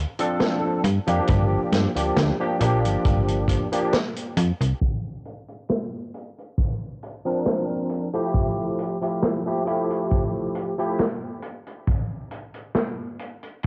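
A barky, bright tine electric piano with ensemble chorus, tape echo and cassette coloring carries this hazy, melancholic vaporwave excerpt at 68 BPM with a light 16th-note swing, moving from Dm7 and Gm7 to C9sus4 and Fmaj9 over a snappy, metallic slap-like FM bass that drops out at 4.7 seconds, a punchy, rolled-off kick that joins at 1.3 seconds, and a gritty 12-bit vintage kit of filtered hi-hat and medium-tuned snare, with a band accent just before a filter sweep that runs through the second section and the piano stopping at 11.0 seconds, all in a light reverb with the dulled sound of a home cassette recording.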